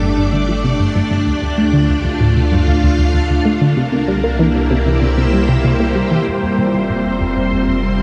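A lush, vintage string machine sits up front in this cosmic, hypnotic stretch of ambient, sequencer-driven space music, its full-bodied sawtooth ensemble voiced with a sub octave and slow attack, sustaining chords through an ensemble chorus. Beneath it, a tight sequenced synth drives a detuned riff with a filter pluck and moving notch, colored by chorus, cassette tape and delay, and it takes on a filter sweep from 6.3 seconds to the end at 8.0 seconds. A round analog bass anchors the low end with a deep, evolving, wave-folded tone that blends square and sine waves into a mellow sustain. At a steady 96 BPM in a straight 4/4, the harmony moves from Gsus2 through Dm and C7 before settling on Fsus2 as the second section begins. The production is dark and bathed in a shimmering reverb with a long 7.8-second tail, and this brief passage is cut from a longer piece.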